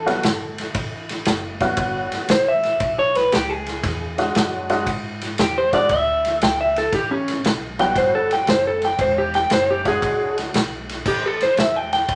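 Laid-back and swaggering, this electric blues shuffle swings easily in 4/4, cut from a longer piece. Up front, an electric guitar through a small old amp carries the melody with a bright, twangy, slightly broken-up picked tone. A detuned honky-tonk upright piano adds jangly, short-sustained accompaniment until it drops out at 10.5 seconds, while a pizzicato upright bass on gut strings thumps woodily, sitting further back in the mix. The vintage drum kit, also up front, brings a punchy kick, a medium-tuned snare and dark ride and crash cymbals, all with a rolled-off top and a pumping small-room character. The harmony moves between A13 and E13 before landing on an A7 at 11.1 seconds, and a moderate studio reverb wraps the band together.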